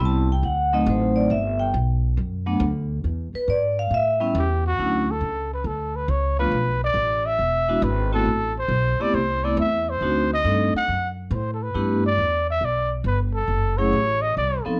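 Vibraphone and upright bass open this late-night jazz fragment together, swinging easily in four. The vibraphone, played with medium hard mallets, rings with a metallic, airy shimmer and a slow motor vibrato, laying down chords such as D7b9, Gmaj7 and A7. Beneath it, the pizzicato bass on gut strings sits up front, woody, thumpy and dark. At 4.4 seconds a breathy trumpet enters with the melody as soloist, mellow and whispered, with soft attacks, scooped notes and a light vibrato that feel intimate and close. The recording carries light reverb and the worn, warbling pitch drift of an old cassette tape, and it is cut from a longer piece.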